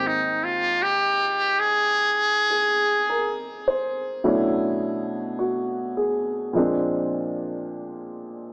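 The recording has a worn, warbling cassette quality, with pitch drift and a small-speaker sound, set in a moderate studio reverb. This late-night, intimate jazz ballad excerpt moves at a slow 52 BPM in 4/4 with a swing on the eighth notes. A trumpet with a metal mute carries the melody up front in a solo jazz style from the start until 3.4 seconds. Its tone is brilliant, buzzy and thin, forceful yet distant and roomy, and it is touched with tape echo. A warm baby grand piano, natural and up front with a short sustain, accompanies through to 8.5 seconds. The harmony moves from Abmaj9 to Bm11 and then to Bb9.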